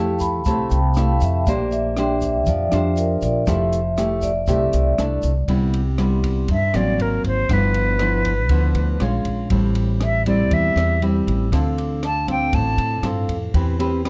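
A straight bossa nova groove from a compact cocktail drum kit, with its punchy kick and rolled-off top, and a grainy tube shaker that drops out at 5.5 seconds, carries this sophisticated, breezy fragment, where a woody, growly pizzicato upright bass and a full-bodied fingerpicked nylon-string guitar sit up front under a ringing vibraphone solo that gives way to a pure, soft-attacked silver concert flute entering at 6.5 seconds, all bathed in light reverb and a dark production.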